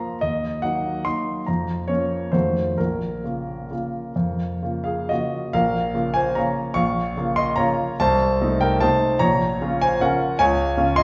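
A solo concert grand piano opens at once, playing a classical waltz in 3/4 in Bb minor with a playful, elegant character. The tempo moves freely between 126 and 158 BPM in a rubato feel. The piano sounds warm, intimate and natural, with deep bass, long sustain and audible action noise, placed up front in the listener's ear. Its range stretches from Bb1 up to Db6, and the harmony passes through Ebm, F7b9 and Adim/C before resolving to Bbm and finally touching Db. A second section begins at 5.6 seconds, and the brief passage, cut from a longer piece, ends at 11.0 seconds. A wet recital hall reverb, sounding like a church or concert hall, surrounds the instrument with a lingering glow.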